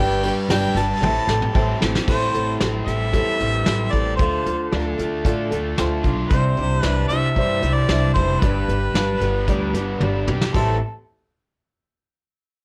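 A worn, warbling cassette-tape sound with warbly pitch drift and light reverb colours this wistful, dusty excerpt of folk rock and heartland rock, moving at 113 BPM in a straight 4/4 in A minor, tuned a little under standard pitch. A clear harmonica carries the melody up front, its smooth top and light vibrato touched by a slapback echo. Beneath it, a boxy picked acoustic archtop guitar and a woody upright piano sitting in the background fill out the accompaniment, while a bright, double-tracked electric guitar with raw overdrive plays a riff. A growly pizzicato upright bass sits prominently in the mix, and a soft brush kit from a small room, with a fat snare and tight kick, comes in at 0.2 seconds and adds a fill at 1.0 seconds. The harmony moves through G, Am7, Dm, Cadd9 and back to G and Am7, and the piano steps forward with a short fill at 5.3 seconds.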